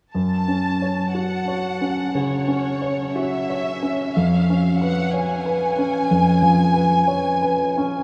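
A polished, present grand piano carries the melody alongside a lush section of bowed violins with expressive vibrato and a soft attack, both up front in this tragic, passionate romantic passage for piano and orchestra in a rubato 12/8, set in a vast, echoing space whose huge reverb lingers around them, as the harmony shifts once at 4.2 seconds before this fragment of a longer movement ends.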